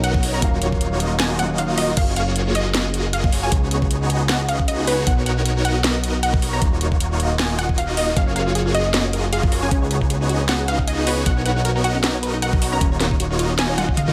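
Lightly reverberant and pumping, this bittersweet, dreamy future bass excerpt from a longer piece moves in a swung, half-time 4/4 feel. A huge, lush wall of detuned supersaw chords, bright with phaser and a cassette tape tint, carries the main riff over Ebm9, Gbmaj9, Db9sus4 and Bmaj9. A punchy unison pluck with a filter sweep and digital delay sings the melody on top, while a fat, thick analog bass sits up front. A knocking electronic kick and a trap kit with sharp snare, metallic hats, crash and toms drive the groove. A dark, mellow grand piano murmurs in the background with dub echo until 2.0 seconds, and from 8.2 seconds a second pluck adds arpeggios with a moving notch and dub echo, before a drum fill at 13.8 seconds closes the passage.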